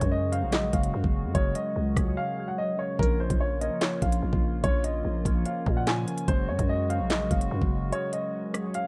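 A dry, close-sounding drill excerpt at 146 BPM with a half-time feel, menacing and ominous, moving from Gbsus2 to Bbm and back. A dark, woody upright piano with audible action noise carries the melody through a low-pass filter and delay, over a clean tine electric piano with phaser, a hollow, flute-like pad with chorus, and a growling, buzzy 808-style bass that drops out at 7.9 seconds. Up front, the drum kit's knocking kick, sharp snare, crisp hi-hats, handclaps and rim clicks carry vintage 12-bit sampler grit, with breaks at 2.2 and 7.9 seconds.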